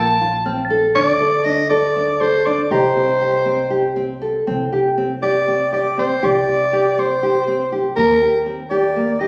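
Captured on a phone in a club-like room with noticeable reverb and compression, this short contemporary instrumental cut from a longer piece has a hypnotic, pensive feel in an uneven 7/8. Up front, a raspy, growling soprano saxophone carries the jazz-style solo melody with light vibrato and a smooth top, over fingerpicked nylon-string guitar arpeggios with fresh strings and audible finger squeak. Underneath, a woody, thumpy pizzicato upright bass holds the low end, while a worn, slightly out-of-tune tine electric piano sits in the background, dropping out at 8.2 seconds.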